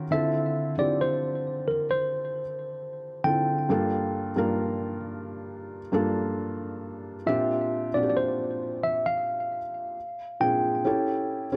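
R&B at a slow 67 BPM in D minor, this moody, late-night excerpt pairs a dark, thick-felt upright piano's intimate accompaniment with a worn, slightly out-of-tune tine electric piano carrying the melody through delay, both up front in a small, lightly reverberant room as the chords move from Dm7 through Gm7 and Bb69 to a closing A7.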